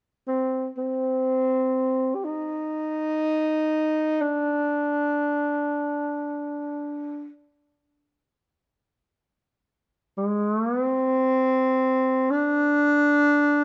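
A breathy alto saxophone carries this still, meditative piece of Japanese traditional music on its own, entering at 0.3 s and holding the stage until 13.6 s. The horn sits up front with a mellow subtone, its scooped notes adding a touch of jazz style to the otherwise traditional mood. The line moves in free time within a narrow range from C4 to G4, tuned to A4 = 439 Hz. Close, detailed microphones catch every breath, while a light reverb lends a roomy air around the instrument. Cut from a longer piece, it unfolds as a single unhurried passage of quiet contemplation.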